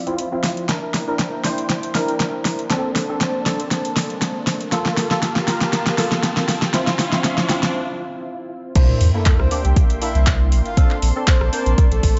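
A tape-warm, up-front deep house drum kit with a fat snare and metallic hats drives this smooth excerpt, as a hollow, chorused organ stab with delay and a vintage, detuned analog pad under a filter sweep build toward a faint riser and sub drop, a drum fill and a brief break, before the drop at 8.8 s brings in a deep electronic kick, a round sine sub bass and a breathy, flute-like synth lead with vibrato and dub echo over chords moving from C7 to Bbmaj9.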